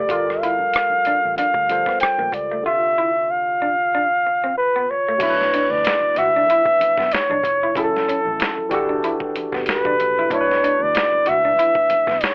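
Smooth and introspective, this short neo-soul R&B cut at 94 BPM in B minor, heard through a telephone filter with light reverb, sets a breathy, vibrato-laden flugelhorn up front with scooped notes over a barky tine electric piano with analog chorus, a slightly broken-up picked electric guitar through a small old amp, a round, foam-muted bass and soft-handed congas in the background, and a gritty, pitched-down boom bap sampler kit with a thumpy kick and high-tuned snare, as the chords move from Gm9 at 0.1 seconds to Bm11 at 5.2 seconds.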